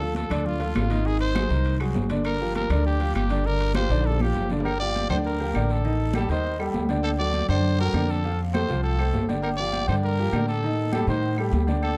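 A gritty, growling trumpet leads this fiery salsa excerpt in G minor at 200 BPM, its punchy solo line carrying light vibrato over a warm baby grand piano accompaniment and an up-front, woody pizzicato upright bass. Congas with a high-tuned, thin skin, ringing timbales and agogo bells, claves and a raspy guiro sit in the background, and a drum fill at 3.9 s leads into a new section at 4.7 s. The dark production has light reverb, and the passionate mood holds throughout.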